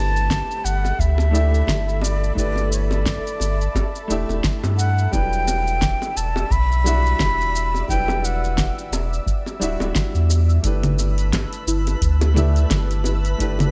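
A smooth, digitally ambient mix opens this sunset chillout excerpt, where a breathy, up-front jazz flute with vibrato and tape echo carries the melody over a warm grand piano, also echoed, and an ethereal, detuned pad shimmering with chorus and tremolo in the background. A round, deep sub bass anchors a swung groove of dry electronic kick, overdriven deep house kit with fat snare, metallic hi-hat, congas and shaker, and tight, high-tuned bongos with soft hands. The flute stops at 8.9 seconds, and after a G69 to Em9 and back, a sparkling granular texture enters at 11.1 seconds, followed by a dark, gentle pluck playing chorused arpeggios from 11.7 seconds.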